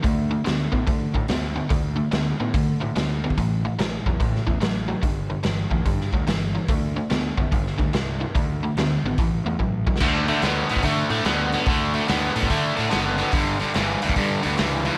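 Lightly reverberant and gritty, this driving cut from a longer blues rock and southern rock power-trio piece swings at 144 BPM in D major, with a crunchy, double-tracked, picked guitar riff up front over D5, A5 and G5 power chords, a growly fuzz-laden fingered electric bass, and a raw, saturated garage drum kit with a punchy kick, medium-tuned snare and rolled-off top in a stone room, whose fill at 9.6 s leads into a new section at 10.0 s.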